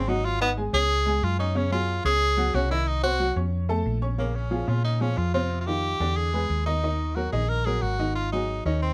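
A straight 4/4 pulse at 182 BPM drives this sophisticated Afro-Cuban jazz passage in Bb minor, cut from a longer piece, where a present, up-front tenor saxophone solos through the first 4.2 seconds over a brilliant, woody, slightly detuned upright piano with short sustain and a dark, round, punchy hollow-body electric bass, all captured with close, detailed microphones and light reverb as chords such as Gbsus2, Cdim, Bbm9 and E7 pass by.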